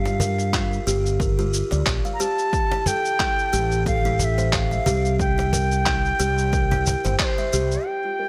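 A 90 BPM 4/4 groove with a 55% swing on the 16ths drives this hypnotic, mystical organic downtempo excerpt, where an overdriven, punchy electronic kick, gritty electronic shaker and handclaps and a woody cajon in the background support a fretless electric bass with lush chorus, a buzzing, ringing kalimba playing arpeggios through a low-pass filter and tape echo, and an airy, reedy bansuri melody with vibrato and digital delay, set in a light studio reverb over Gm7, Am7 and C7 before a band accent at 7.2 seconds.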